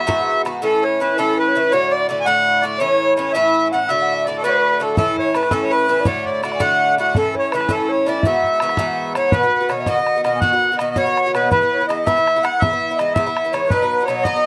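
Bright and lively, this Celtic folk jig moves at 110 BPM in 6/8, tuned to A4 = 435 Hz, and shifts into B major at 9.3 s. An up-front, close-miked accordion with a full, reedy sound and slow beating carries the melody, while a pure, woody baroque flute with a crisp attack plays a second line in the background, and a picked Irish bouzouki adds metallic double-string accompaniment. A damped, tight bodhran sounds briefly at the opening and returns at 5.0 s, with light reverb on the mix.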